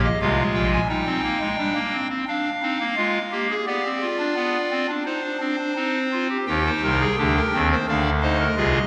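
Contemplative and solemn, this short cut from a longer baroque-style classical fugue in four parts unfolds at 86 BPM in a straight 4/4 on a lone pipe organ sounding a hollow clarinet reed stop with baroque voicing and a touch of chiff, sitting up front yet bathed in a church reverb of about 3.3 seconds as the harmony moves from Fm through Ddim and G/B to Cm before a new section opens at 6.5 seconds and closes on Dm7b5.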